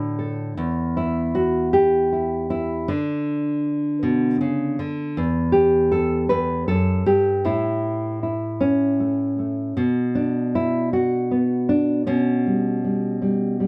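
Close, detailed microphones and a touch of light reverb put a lone nylon-string guitar up front, its fresh strings giving a warm, full-bodied, deep classical tone where finger squeak is audible. This wistful, melancholic folk fragment, cut from a longer piece, is solo fingerstyle playing at a slow 52 BPM in a straight 6/8 feel. The thumb-plucked guitar spans E2 to B4, so low bass notes sit beneath the upper lines within a single instrument. After a brief D chord, the main section begins at 0.6 seconds and moves through chordless passages and colours such as Bmadd9, Em and A before settling on Bsus2 near 12.1 seconds. The intimate, unhurried sound lingers until the fragment ends at 13.7 seconds.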